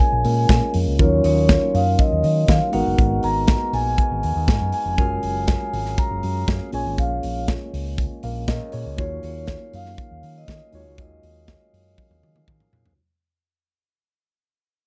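A straight disco pulse from an up-front acoustic drum kit with a tight kick and punchy, round fingered bass drives this glamorous, sultry clip, where a ringing soft-mallet vibraphone carries the melody with slapback echo over a mellow tine electric piano and a fat, lightly overdriven tonewheel organ in the background, all in a dark, dry production that fades out from 1.8 seconds to the end, with a drum fill arriving at 12.0 seconds.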